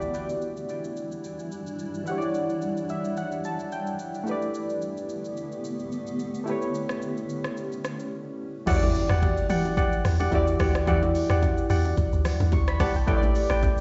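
Late-night and soulful, this amapiano passage, cut from a longer piece, rides a gently swung groove. Round, detuned analog keys sit up front with chorus and a filter sweep, carrying the Em9 and A9sus4 chords, with a keys fill arriving at 2.6 s. A cloudy, evolving granular pad breathes beneath them with sidechain pumping and its own reverb, while an electronic deep house kit of deep kick, smooth hats, rim click, shaker and crash holds the pulse throughout. At 8.7 s the drop brings in a dark, percussive log drum bass, mellow organ-like stabs treated with chorus and tape echo, ringing, close-sounding congas and bongos in the background, and a brief electronic impact. The whole mix sounds as if played on a big sound system in a bare stone room, with a dulled top end.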